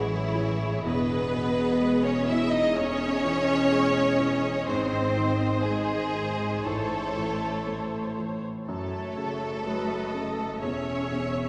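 Sorrowful and moving, this cinematic film score for orchestra unfolds slowly at around 58-64 BPM in 4/4, its rubato feel giving the C# minor harmony room to breathe. A bright, intense violin section carries the melody with vibrato, while a second violin section sits in the background, smooth and even in tone. Alongside them, a focused, close viola section and a clear baby grand piano with long sustain fill out the accompaniment. The rich cello section is the most prominent of the strings, joined on the bass by a distant double bass section with light vibrato. The chords move from Amaj7 and Emaj7 through C#madd9/E, G# and A to F#m and E. A wet church reverb lends the lush ensemble a spacious, hall-like glow across this 11.5-second passage cut from a longer piece.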